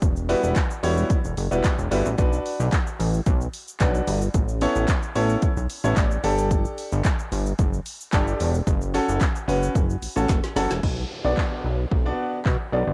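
A glossy, retro synth bass with a chorused, evolving pulse-wave and sawtooth tone and a plucky filter attack drives this bittersweet yet energetic dance-pop excerpt in B minor at 111 BPM, pumping against a sidechain from the first beat. A deep house drum kit sits up front with a punchy kick, a woody snare, dark hats, handclaps, shaker and crash cymbal, given a worn cassette-tape grit. A clear, smooth grand piano with short sustain enters at 0.3 seconds as accompaniment, also pumping and tape-colored, adding a brief fill around the middle. Very quiet, hollow group handclaps add a human, vintage touch in the background. The harmony moves through Emadd9, Bm, Aadd9, Gsus2 and F#m, and after a drum fill an electronic downlifter arrives at 10.8 seconds as the progression returns to Bm. Light reverb and a homespun cassette recording round out the sound.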